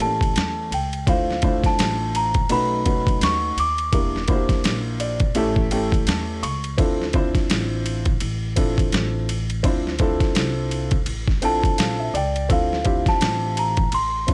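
A gritty, overdriven boom bap sampler-style drum kit with a thumpy kick and compressed, pitched-down hi-hat, snare and ride opens this mellow, nocturnal jazz-hop excerpt in D minor at 84 BPM with a swung feel, alongside a woody, vintage upright piano accompaniment, a dark gut-string pizzicato upright bass and a bell-like, delicate celesta melody that sits close and dry, drops out at 5.0 seconds, then returns at 11.4 seconds, while the piano adds fills beginning at 4.6 seconds over light reverb.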